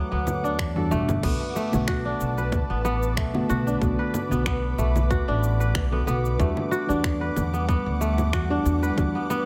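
Hypnotic and mystical, this organic downtempo excerpt in B minor moves at 93 BPM with a gentle 16th-note swing, as a crisp, ringing kora plays fingerpicked arpeggios up front over a woody pizzicato upright bass and dark, decaying chord stabs colored with chorus and delay. An ethereal, airy pad of detuned sustained chords floats above, its reverb-soaked tone breathing with sidechain pumping alongside the stabs and bass, while the chords shift from Em9 to Bm7 and back. A layered deep house kit of congas, finger snaps, shaker and crash enters at 0.3 seconds with a close, dry, very quiet darbuka that stops at 1.2 seconds, and a tight, tape-warm electronic kick joins at 0.6 seconds, all set in light digital ambience.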